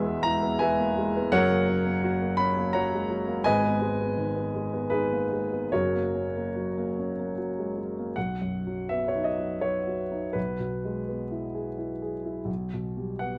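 A warm, up-front grand piano carries this short, hopeful extract of a Romantic character piece in B major, moving in a flexible rubato 3/4 at roughly 72-87 BPM across a span from the deep bass to the upper register, with a second passage beginning at 8.2 s that settles on B before a minor-tinged E chord over B at 12.5 s, all captured by close, detailed microphones with light reverb.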